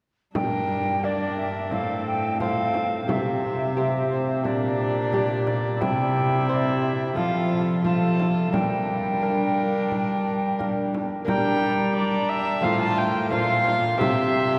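A mellow, distant alto recorder with chiff and vibrato opens this solemn, courtly renaissance-style consort dance at 88 BPM in G dorian, alongside a delicate fingerpicked lute of doubled gut strings and a small, bright frame drum played with soft hands in the background, joined at 0.4 s by a close, airy-bowed viola on the second line, a dark viola accompanying beneath it and an up-front cello whose nasal, reedy gut-string tone carries the bass, the consort heard from further back in a long cathedral reverb.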